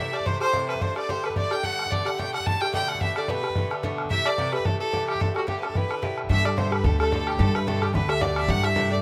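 Rollicking and bright, this Celtic reel in G major drives along at 218 BPM with a light swing, as an earthy, up-front fiddle with a smooth top and light vibrato carries the melody through a tape echo while a second, clear and intense fiddle traces a line in the background. Underneath, an Irish bouzouki adds mellow, metallic picked double strings over chords such as Am, Dsus4/G and Gadd9, and a damped, tight bodhran with a vintage, band-limited tone keeps the beat. At 6.3 seconds a woody, thumpy upright bass enters up front with dark pizzicato steel strings, all captured dry in a rough home demo mix of this excerpt from a longer piece.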